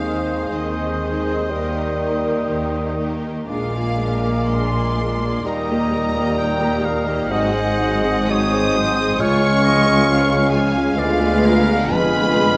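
A classical orchestral passage in Ab major, cut from a longer piece, moves with a tender, warm mood at a slow, rubato 56-68 BPM in 4/4. A rich, focused studio violin section carries the melody up close, its lush vibrato reaching as high as Eb6. Around it, a clear close-miked oboe, an airy flute, a roomy clarinet and a second, more distant and intense violin section trace supporting lines. A mellow bassoon and a smooth viola section fill out the middle, while dark French horns and trombones with light vibrato hold very quiet sustained chords. Smooth cellos and expressive double basses anchor the bass with bowed depth, and the harmony passes through Eb, Bb7 and Ab7 to Db before turning to a Ddim7 at 11.0 seconds, all within a moderate scoring-stage reverb.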